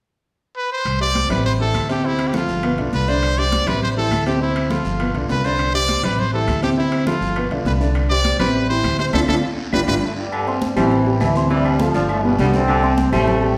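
A straight 4/4 salsa groove at 203 BPM in C major drives this joyful, danceable cut, with pizzicato steel-strung upright bass, hard-handed high-tuned congas, ringing metal-shell timbales and agogo bells, raspy guiro and faint woody claves beneath a boxy, long-sustaining concert grand piano, while a brilliant, up-front trumpet with light vibrato carries the melody until a band accent at 9.1 s and a drum fill at 9.4 s lead into a tight, close-miked trombone section at 10.0 s, joined by a clear baritone saxophone second line, in a reverberant concert-hall space.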